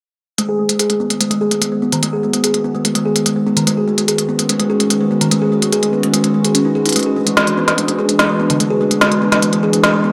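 A brisk 146 BPM pulse in straight 4/4 drives this cerebral, glitchy IDM fragment in G# minor, cut from a longer piece, with an organic electronic drum kit setting the rhythm from 0.4 s through 9.9 s using crisp hi-hats and a woody snare, up front and treated with gated reverb. Over it, a kalimba plays arpeggios with a plucked, boxy character, run through a low-pass filter and delay, and a filter sweep moves across it for the whole passage. Beneath sits a hollow, flute-like pad holding sustained chords with a slow attack and long release, mellowed by chorus and sitting lower in the mix. The harmony rests on G#m7 before shifting to E9 at 7.0 s. A wet plate reverb and bright 1980s-style digital production give the short section a glossy, spacious sheen.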